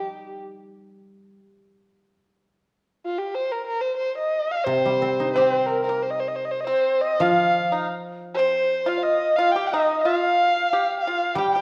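Chinese traditional chamber music in a wistful, graceful mood, moving at 90 BPM in 2/4 in the C yu mode, heard as a short cut from a longer piece. A dark, woody erhu carries the melody up front with vibrato and portamento, over silvery, ringing guzheng accompaniment, and from 5.4 seconds an airy bamboo xiao with straight tongued tone sits in the background beside a dry, percussive fingerpicked pipa. The ensemble sounds through the reverb of a recital hall, with the worn, warbling pitch drift of an old cassette tape colouring the whole recording.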